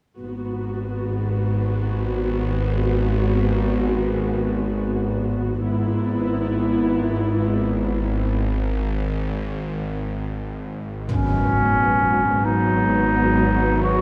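Ominous, uneasy cinematic music in free time, where a lush, woody viola section with vibrato sits up front, over a floating, distant cello section and an intimate double bass section, all bowed sul tasto. A tense, nasal, string-like synth drone with its own reverb sustains low beneath them, evolving throughout, and the dark production places everything on a moderate scoring stage. After a break from 8.4 s, a bright, vintage-toned solo clarinet enters up front at 11.1 s with a second line as an electronic impact strikes, and the double bass section stops shortly after.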